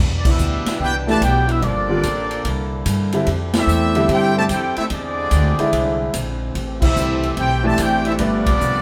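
A moderate studio reverb gives this short cut from a longer big band swing piece the feel of a band playing live together in one room, at a joyful, swinging 146 BPM in C major. Clear trumpets with vibrato carry the melody up front, while two bright, close-miked trombone sections sit in the background, one holding sustained chords and the other playing a second line. A woody, thumpy upright bass, a grand piano with deep lows that joins shortly after the start, and a natural-sounding drum kit with a punchy kick drive the rich harmony from Cmaj9 through E7alt, with full-band accents at 0.2, 3.5 and 6.8 seconds.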